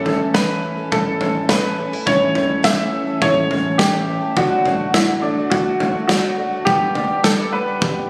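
Nostalgic and anthemic, this indie folk excerpt in A mixolydian moves at 104 BPM in a straight 4/4 over A, D and G, with a clear, worn, slightly detuned upright piano carrying the melody up front, a dark fingerpicked steel-string guitar with finger squeak sitting in the background, a boxy, shimmering twelve-string guitar with old strings and subtle chorus picking alongside, a very quiet, woody pizzicato upright bass, and a loose indie drum kit with tight kick, medium-tuned snare and toms pumping in a small room, the whole set in a moderate scoring-stage reverb and captured on a phone.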